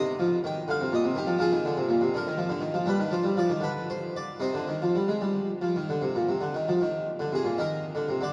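Grave and flowing, this brief excerpt from a longer baroque-style suite movement in C minor features a solo harpsichord, airy and brilliant with three sets of strings, placed up front in a loose, rubato 12/8 at 74-83 BPM, its plucked tone spread across a Bb2 to G5 range and bathed in a cathedral reverb with a 5.0-second decay, all heard through worn, warbling old tape with cassette wobble, vinyl crackle, drifting pitch and a dulled top end.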